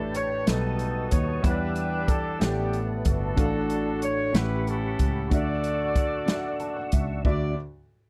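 A punchy horn section carries the melody over clear, intimate grand piano, a soft flute-like tonewheel organ with slow rotary speaker and chorus vibrato, a round, dark fingered electric bass and a swinging big-band drum kit with punchy kick and medium-tuned snare in this jubilant, soulful slow gospel excerpt in D major, moving in 6/8 at 62 BPM through rich chords like Em9, A13 and Dmaj9, with a dry, close 1970s-style studio sound and a piano fill from 6.3 seconds before it settles on Dadd9.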